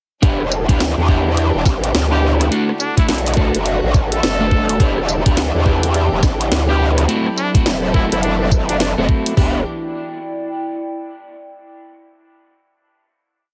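Funky and gritty, this short glitch hop piece in E minor moves at 105 BPM with a swung 16th-note feel, built almost entirely as a drop that runs to 9.4 seconds before settling on a final E minor seventh chord. Two layered electronic drum kits sit up front: one carries a knocking kick with floor tom and open hi-hat in a broken pattern, while the other adds a cracking snare, rim, closed hat and tambourine in a swung beat with edits. A growling, saturated sine bass with a formant filter and chorus delivers modulated phrases with changing wobble speed, loud and bright in the mix. Over this, a slightly broken-up electric guitar plays a rhythmic riff of rootless chord stabs through dub echo and sidechain pumping, and a dark chamber string section holds soft, sul tasto chords in the background with vintage sampler grit and the same pumping. A clear trumpet with vibrato enters at 2.1 seconds for short answering phrases, also treated with dub echo. 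A very quiet, warbling tape-like pad with a nostalgic lo-fi tint lingers alone after the rest stop, until 11.6 seconds, all within a heavily compressed, radio-like sound and light digital ambience.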